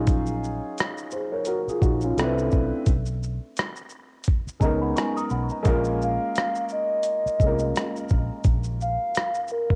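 A gritty, compressed sampler-style drum kit with a thumpy kick sits up front in this reflective, hazy lo-fi hip hop clip, alongside a dark, woody upright piano with cassette-tape colour, a round, foam-muted electric bass, a brief celesta line with analog delay at 4.6 seconds, and a hollow, clarinet-like synth lead with chorus that returns at 6.0 seconds, the whole home cassette recording bathed in a moderate spring reverb.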